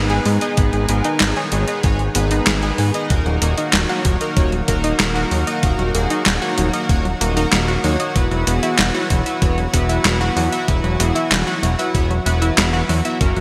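A straight 4/4 pulse at 95 BPM drives this cinematic, nocturnal synthwave excerpt, tuned to A4 = 435 Hz. A thumpy, sampler-style electronic kick arrives at 0.6 seconds under an up-front 80s digital drum machine of handclaps, hi-hat and gated-reverb snare, while a fat, detuned sawtooth bass with tube saturation sits up front. Over the G#m, D#m and Esus2 chords, a lush sidechain-pumped unison pad holds sustained chords in the background, a glossy pulse-width-modulated polysynth fires stabs through digital delay, and a round, chorused pluck spins arpeggios with a cassette-tape tinge, all framed by bright 1980s-style digital production with light reverb.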